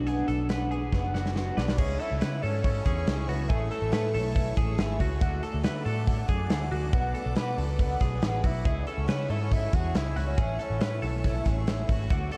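A velvety, detuned synth lead with chorus and delay opens this bright, youthful jangly indie pop at 140 BPM in A major, over boxy, shimmering picked twelve-string acoustic guitar, twangy clean twelve-string electric arpeggios and a dark, round, foam-muted bass, as a big rock drum kit with a punchy kick plays a fill at 0.9 seconds, a clear trumpet adds a soft second line in the background from 1.6 seconds, and vintage string-machine violins with phaser and ensemble chorus hold sustained chords from 1.8 seconds, all set in a dreamy mix soaked in huge ambient reverb.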